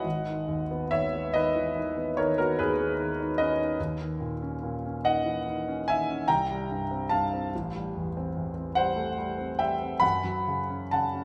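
Flowing in a rubato 9/8, this brief excerpt from a longer impressionist classical piece sets a solo concert grand piano, intimate and up front with deep bass and audible action noise, in a moderate concert hall reverb, its mysterious, wistful harmony drifting from G#m7 through D#m7, C5 and Am7 to F#5 across 11.2 seconds.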